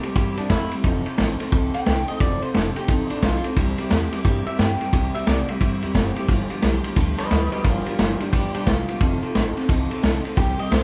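A band playing live in one room, lightly touched by reverb, drives this rowdy, retro rockabilly excerpt at a swung 176 BPM in C mixolydian, with chords moving through C7, F7 and G7. A twangy, slightly broken-up electric guitar through a small old amp takes a clean solo across the full 10.8 seconds, while a second, equally twangy and slightly broken-up amp guitar holds down a low riff and a full-bodied dreadnought acoustic sits in the background, its finger squeaks audible. Underneath, a woody, thumpy pizzicato upright bass on gut strings and an up-front vintage drum kit with kick, snare and ride, saturated, with dark cymbals and a rolled-off top, give the groove its weight.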